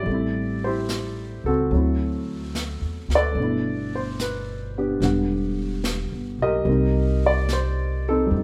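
A romantic, intimate jazz ballad moves with a gentle swing in this brief fragment cut from a longer piece. A dark baby grand piano carries the accompaniment, its mellow, short-sustained tone close at hand with the mechanical noise of its action audible beneath the chords. An upright bass sits up front as well, plucked with a woody character on steel strings. A vintage brush drum kit, entering at 0.1 seconds, stays further in the background, with brushes on a medium-tuned snare alongside hi-hat. The harmony drifts from Am7 through D9 and G69 to Em7, then darkens onto Cm7 near the close, all heard from further back in a large studio with a moderate reverb.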